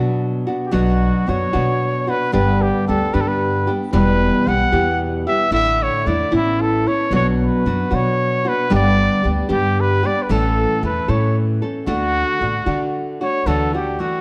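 Fingerpicked nylon-string guitar, full-bodied and up front with audible finger squeak, opens this romantic, proud mariachi fragment in 6/8 at 75 BPM over a woody, growly pizzicato upright bass, before a mellow trumpet enters at 0.7 s with a soft attack and light vibrato to carry a classical-style solo melody in D major through a Bm–G–Em–A progression that comes to rest on D, all set in a moderate recital-hall reverb.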